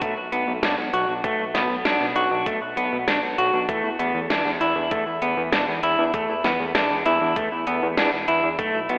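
Synthwave at 98 BPM in a straight 4/4, this nocturnal, moody excerpt is led by an up-front electric guitar at the edge of break-up, fingering arpeggios between A3 and F#4 through a diffuse ambient delay, over a fat, detuned sawtooth analog bass with tube saturation, a filter sweep and sidechain pumping. An electronic kick drum gives a thumpy, tape-warm, sampler-style pulse until 8.7 s, while a layered pop drum kit adds a fat snare and crisp hats, both kits sitting in a small room reverb. The harmony moves from B5 to E7sus4 at 3.7 s, and the dreamy mix is soaked in a lush hall reverb with a telephone-like tone.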